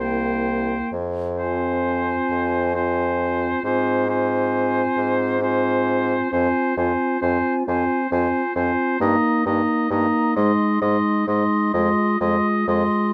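Classical slow romantic movement for wind quintet in a lyrical, rubato 6/8, where a hollow silver concert flute with vibrato carries the melody above a clear oboe second line, a dark, soft-attacked clarinet and a mellow French horn fill the accompaniment, and an up-front bassoon with light vibrato holds the bass, all set in light reverb across this 13.1-second excerpt.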